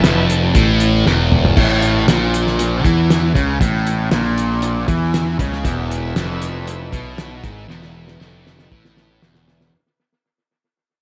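This dark, hypnotic psychedelic rock clip moves at 118 BPM in a straight 4/4, cut from a longer piece. A brilliant tonewheel organ opens with a short solo burst, full and shouting through a slow rotary speaker with light overdrive and key click, then returns at 5.6 seconds with sustained chords in the background. Up front, a double-tracked overdriven electric guitar plays a low riff through a phaser, alongside a round, fuzzed picked bass, over chords moving from E5 to A and back to E5. The cloth-damped drum kit sounds thuddy and muffled, with a fat snare, tight kick, gritty dark cymbals and a rolled-off top, soaked in dub echo and punctuated by drum fills. Set in a small, lo-fi room with an echo-heavy mix, the whole passage fades out from 1.6 seconds onward.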